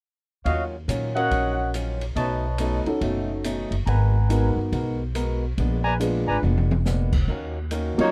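A warm trumpet section stands out from 0.5 s, punching out stabs with a smooth top over a sultry, dramatic big band swing groove in a minor key. Beneath it, a growly, woody upright bass sits up front while a bright, boxy picked acoustic guitar comps quietly alongside. The open jazz drum kit has dark cymbals, a high-tuned snare and a boomy kick, and it plays a fill at 6.4 s as the trumpets stop. An intimate baby grand piano with audible action noise enters at 1.2 s, adding to the accompaniment over rich extended chords. The dry, close recording has a 1970s studio character, and the cut ends just as a soft-attacked saxophone section with light vibrato arrives at 8.0 s to take the melody.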